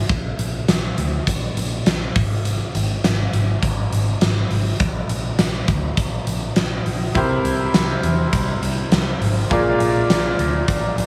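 A huge arena drum kit drives this short cut from a longer 1980s-style pop track, its punchy kick, fat snare and hi-hat pumping up front with hall-like room sound at 102 BPM in 4/4 with a light sixteenth-note swing, in a mood both nostalgic and urgent. A vintage muted picked electric bass runs underneath throughout, dark, round and foam-muted with an amped edge. At 7.1 seconds a bright grand piano enters with brilliant, intimate tone, audible action noise and long sustain, playing C7 and then Bb7 chords over light reverb and small-room ambience.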